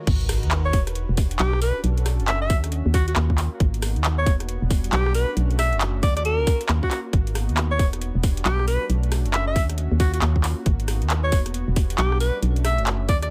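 A clear alto saxophone carries a soulful, pop-style solo with vibrato and delay from 0.7 s, riding a skippy two-step UK garage groove with swung sixteenths in this passage cut from a longer piece. An overdriven, tight electronic kick sits up front beside a hollow, organ-like FM bass whose dark, percussive notes pump with the sidechain, while a layered garage kit of metallic hi-hats, handclaps, rim clicks and crash cymbal is low-pass filtered and re-recorded in a small room. A mellow, detuned sawtooth pad holds slow-attack ninth chords with chorus and pumping, and a very quiet swell and sub drop marks the opening impact before ending at 1.8 s, inside a digital ambience.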